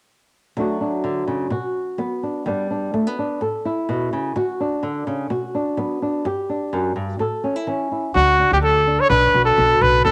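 A bright, up-front solo trumpet with light vibrato and a pop-style cassette-tape tone takes the melody at 8.2 s in this sunny highlife guitar band excerpt, joined by woody pizzicato upright bass, after a dark, thumb-plucked flamenco guitar, also up front with a cassette-tape character, carries the D, Bm, G and A accompaniment alone from 0.6 s, all in a homemade cassette recording with moderate spring reverb and small-room ambience.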